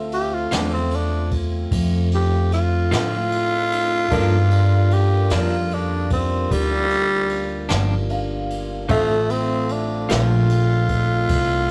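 Slow blues in D minor at 50 BPM in 12/8, brooding and soulful, where a raspy, growling tenor saxophone takes the up-front solo over woody pizzicato upright bass, brushed drums with dark cymbals, a tonewheel organ holding sustained chords through a slow rotary speaker, a worn, slightly detuned upright piano in the background that adds a fill at 7.7 seconds, and a clean, picked electric guitar with harmonic tremolo entering at 0.5 seconds, all moving from Dm7 to Gm7 and back in a rough rehearsal-room sound with light reverb.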